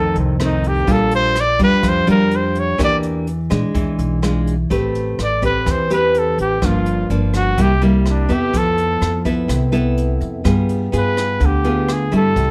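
A warm, smooth trumpet with light vibrato and plate reverb carries an intimate bossa nova solo from the first moment, joined by fingerpicked nylon-string guitar with a deep classical tone and woody pizzicato upright bass. At 0.2 seconds a brushed jazz kit enters softly in the background with hi-hat, rim clicks and a boomy kick. This excerpt from a longer piece moves through jazzy chords such as F7, Em7b5, Am9 and Fmaj7#11, with the trumpet and guitar up front in a light room ambience.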